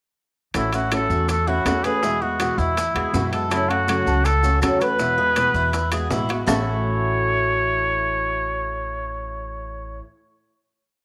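Cuban son and guajira in a danceable, warm mood, this short piece is carried by a breathy trumpet up front, playing a motif-based melody of call phrases with vibrato, a soft attack and an intimate, whispered, vintage tone. Beneath it, a Cuban tres picks an arpeggiated guajeo on metallic double strings. A dark, boxy fingerpicked ladder-braced acoustic guitar with old strings adds strumming with muted slaps, and a pizzicato upright bass plays a woody tumbao that anticipates the chords. The percussion is light: very quiet round, low-tuned bongos in steady eighths, a two-bar claves time line, grainy maracas set distant in the background, and ringing metal-shell timbales playing a shell pattern with bell. The percussion drops out at 6.6 s, leaving trumpet, tres, guitar and bass to hold the final chord, all sitting in a small room with a moderate echo chamber reverb.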